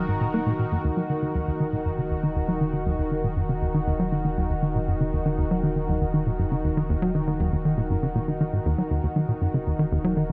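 Cosmic and expansive, this 10.3-second cut from a longer piece of ambient, sequencer-driven space music moves at 119 BPM in Eb minor, resting on a single Ebm chord as a tight, punchy, dark sequencer bass riff with a sawtooth bite and filter-plucked decay runs through tape echo, beneath a bright, airy, up-front pad of detuned, evolving sustained chords thickened by chorus, while a round sine sub bass holds a deep Eb1 and a huge ambient reverb with a 7.9-second tail opens up the space.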